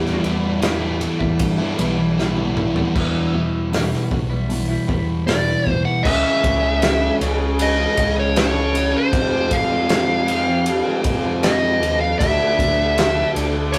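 Quiet-loud alternative rock, brooding and angsty, at 78 BPM in a straight 4/4, cut from a longer piece and captured as a rough rehearsal-room recording with moderate studio reverb. It opens on E minor with a thick, distorted fuzz guitar riff up front, a bright, twangy twelve-string electric guitar playing clean, phaser-treated arpeggios in the background, and a compressed overdriven electric guitar riff tucked further back. A growly, punchy picked bass and a loose indie drum kit anchor the groove; the kit sits up front in a small room with a fat snare and tight kick, and plays a fill just before the 3-second mark. At 6.0 seconds the fuzz and twelve-string guitars drop away and a double-tracked, hollow-body semi-hollow guitar riff with spring reverb takes their place, as the chords move from C#m through Fm to D. Over this, a smooth, overdriven lead guitar carries the melody up front from about 5.3 seconds.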